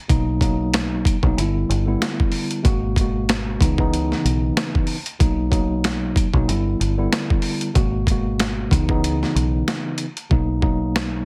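A swung sixteenth-note groove at 94 BPM in 4/4 drives this nostalgic, confident boom-bap hip-hop clip in B major, cut from a longer piece. Up front, a gritty, compressed sampler-style drum kit delivers a thumpy kick, a high-tuned snare and hi-hats, with a tape-warm character and the air of being re-recorded in a large room. Beneath it, a deep dub fingered electric bass sits low with a dark, round, foam-muted tone, taken direct and amped. A mellow, clean tine electric piano, also up front and played through its built-in speakers with high-pass and low-pass filtering, cycles through Bmaj7, G6, G#m9 and C#m9 twice. A break arrives at 9.0 seconds, and at 10.3 seconds the hi-hats fall silent as the harmony settles back on Bmaj7. The whole mix is dry, with a heavily compressed, radio-like sound.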